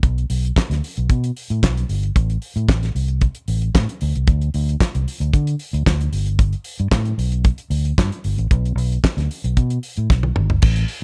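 Driving and danceable, this short disco cut from a longer piece moves at 113 BPM in a straight 4/4, pairing a dark, round, punchy fingered electric bass with a dry, damped 70s drum kit of tight kick, fat snare, hi-hat, handclaps, toms and dusky crash cymbal, both up front with little reverb, before a drum fill at 10.1 seconds.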